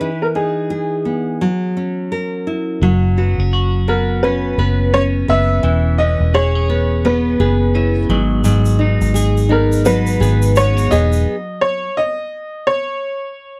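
A dry, close recording with the intimate feel of a 1970s studio frames this short excerpt of carefree, heartfelt acoustic pop at 85 BPM, swung lightly on the sixteenths. A clear, woody upright piano, worn, boxy and slightly detuned, carries the melody up front from the opening, alongside a fingerpicked nylon-string guitar with a deep classical tone and audible finger squeak. At 2.8 seconds a bright, twangy twelve-string electric guitar joins with compressed, clean picked arpeggios, while a round, foam-muted vintage bass adds a dark, amped low end that sits prominently in the mix. A grainy egg shaker, distant as if heard across a large room, adds a light shimmer near the end. The harmony moves from Emaj7 and F#7 through F#sus4, C#m7/E and G#m7. The bass drops out at 11.2 seconds, the shaker and the harmony stop at 11.3, and both guitars fall away by 11.9 seconds, leaving the piano alone until 13.6 seconds.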